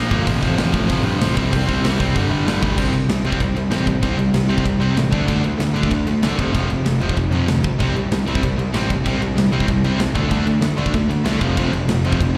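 A bright, overdriven electric guitar and a darker, sludgy guitar set in the background open together at 0.0 s, both picking a riff with slapback echo over a fuzz-laden picked electric bass, in a rowdy, energetic punk rock excerpt at 191 BPM. A big, airy, polished rock kit joins at 0.1 s with punchy kick, medium-tuned snare, hi-hat and bright crash cymbals up front, while the riff moves through F/A, C5 and G5 before shifting at 2.8 s to a section cycling C5, D5 and F5. The whole band sounds like a live gig heard through the venue's PA, with a small-room ambience and recital-hall reverb giving it a raucous glow.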